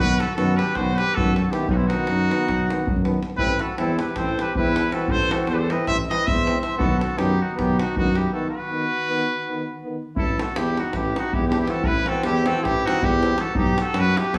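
Fiery yet bittersweet, this Balkan brass band excerpt drives forward in a straight 9/8, its harmony swinging between B and A minor. A clear trumpet carries the melody up front with a distant, roomy quality, while the flugelhorn sings a second line beneath it with light vibrato and a vintage tone. In the background, a brilliant, punchy trombone and a mellow euphonium supply the accompaniment until they drop out at 13.3 s. A warm, present tuba anchors the bass, and a deep acoustic davul sets the beat from a small room. A break at 8.5 s briefly interrupts the flow before the opening theme returns at 10.2 s, all set within the wet ambience of a recital hall.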